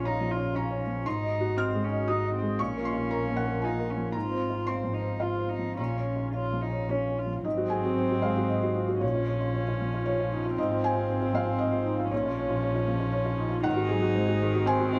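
A mellow, felt-muted upright piano sits up front in this longing, fragile neoclassical piece in Bb minor, moving at 116 BPM in a rubato 3/4 over chords circling Bbm, Ab7 and Fm/Ab, alongside a dark, woody bowed double bass, a pure sul tasto cello second line and a brassy, detuned analog pad with chorus in the background, while a soft-attack bowed viola enters at 7.4 s, the ensemble heard together in a moderate studio reverb that suggests a band playing live in one room.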